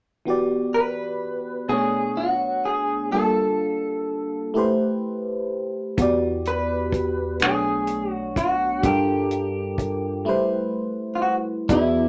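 Bathed in a wet small-room reverb, this yearning, sultry slow R&B excerpt in six-eight opens with a glassy, bell-like FM electric piano shimmering through chorus and phaser, joined at 0.7 seconds by a slightly broken-up, compressed electric guitar carrying the melody with a vibrato effect, and at 6.0 seconds a barky, lightly overdriven tine electric piano takes the bass and a dry, dark, cloth-damped drum kit adds a tight kick, hi-hat and finger snaps beneath the minor-ninth chords.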